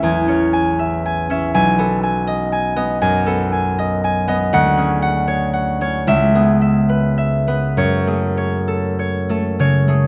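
In a rubato 4/4 that drifts between 66 and 83 BPM, this gentle, mysterious classical excerpt for solo concert harp sits in F# dorian, tuned to A4 = 441 Hz. The fingerpicked acoustic harp spans A1 to G#5 with a warm, ringing tone, moving through Amaj7, B13, Dmaj7#11 and C#m7 before settling on F#madd9 at 7.8 seconds. Close, detailed miking in a nearly dry space keeps the instrument up front for the full 10.1 seconds of this fragment of a longer piece.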